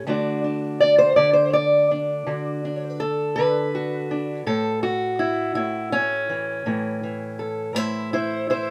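Soulful and rollicking, this brief excerpt of acoustic country blues in A major sets a lone fingerpicked steel-string parlour guitar, dark and boxy and up front in a wet studio reverb, rolling through a slow 12/8 at 55 BPM from a D chord to A at 4.5 seconds before it breaks off at 8.7 seconds.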